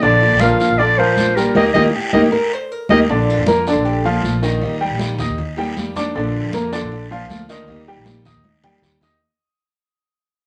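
Cuban son in a guajira vein, this relaxed, warm excerpt moves at 157 BPM in a straight 4/4, sitting in Bb major and rocking between Bb and Eb chords. A clear, classical-style clarinet takes the melody up front for the opening three seconds, while a brilliant baby grand piano spills open, up-front arpeggios across its range and a picked parlour steel-string guitar with fresh strings supplies accompaniment beneath. An upright bass plucks a woody, thumpy low line on gut strings, and soft-handed congas with a thin, medium-tuned skin sit close and dry in the background alongside a raspy guiro. A boxy, fingerpicked nylon-string guitar with old strings adds a small second line from 1.8 to 4.8 seconds, overlapping a band accent that lands around 1.6 seconds. From 3.1 seconds the music fades out under moderate studio ambience, closing with a drum fill from 8.4 seconds.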